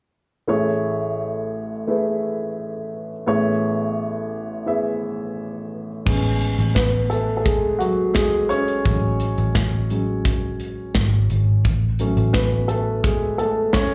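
Piano-driven pop in A major at 86 BPM, this short excerpt from a longer piece carries an uplifting, anthemic mood in a straight 4/4 feel. A dark upright piano opens alone at 0.5 seconds, its mellow, woody tone sitting up front with a slapback echo as it lays down an Amaj7 chord. At 6.1 seconds a vintage muted picked electric bass and a modern studio drum kit arrive together while the piano moves into a solo that runs to the end. The bass is amped, foam-muted and round, holding low between G#1 and A1. The kit is mid-forward, with a punchy kick, a medium-tuned snare, hi-hat, crash cymbal and a rolled-off top. The harmony shifts to F#madd9 at 8.9 seconds and then F#m/A, all heard as a live gig through the venue's PA with light club reverb.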